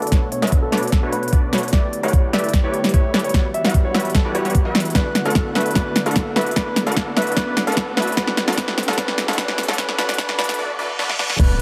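Future bass in a half-time feel, this bright, lush passage, cut from a longer piece, is one long build-up driven by filter sweeps on the supersaw stab and the baby grand piano. The grand piano carries the melody with a natural, short-sustained tone, pumped by sidechain and trailed by delay, while the supersaw stab plays a punchy, detuned riff that also pumps. Underneath, a barky, gritty tine electric piano with medium tremolo and delay sits in the background as accompaniment, and a breathy, very quiet pad holds sustained chords through lush extended harmonies such as Bm9 and Em9. A knocking electronic kick sits up front beside a layered, overdriven big-room kit with a punchy snare, crisp hats and crash, running drum fills across the passage, and a deep, boomy 808-style bass is barely audible beneath. Very quiet effects arrive at 3.5 seconds, with a reverse cymbal from 10.6 seconds leading to an impact at 11.4 seconds, all set in light reverb and digital ambience.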